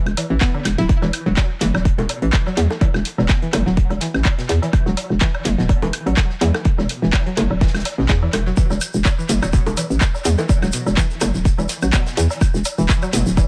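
Light swing on the sixteenths drives this quirky, hypnotic minimal techno excerpt, anchored by a punchy, layered electronic kick placed up front. A hollow, bouncy FM bass knocks beneath it with fast, decaying notes and sidechain pumping, while a twangy, string-like resonator pluck carries the riff through chorus, analog delay and a filter sweep with a moving notch. An analog drum machine adds handclaps and hi-hat coloured by tape echo, and electronic woodblock, toms and bongos scatter through analog delay in a large-room re-recording. Far in the background, a very quiet acoustic soul kit supplies distant hi-hat and a medium-tuned snare with a rolled-off top. At 8.6 seconds a grainy, vintage tube shaker joins, and the whole excerpt sits in a small room ambience within an echo-heavy mix.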